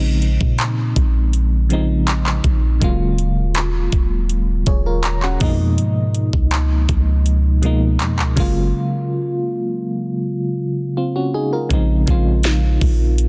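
Longing and late-night in mood, this contemporary R&B fragment moves at 81 BPM in Bb minor. A mellow FM electric piano with tremolo sits up front, moving through Bbm11, Ebm11, Db13 and Gbmaj9 over a soft, round 808-style bass with a deep sine tone. An overdriven trap drum kit with a knocking kick, sharp snare, metallic hats and handclaps enters at 0.2 seconds; the electric piano plays a fill at 4.7 seconds, a break arrives at 8.7 seconds, and the whole sound is dry, dense and heavily limited.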